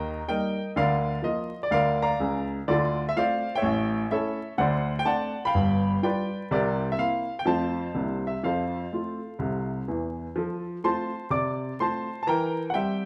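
Vinyl crackle and a moderate large-studio reverb frame this live-in-the-room fragment of exuberant, playful stride jazz at 125 BPM in a swung 4/4 and F major, where a clear, natural baby grand piano plays solo and up front with short sustain, ranging from deep bass to bright treble as chords pass through Dm7, A7, D7, G7 and C7 before resolving to F and turning to C7/E at 12.3 seconds.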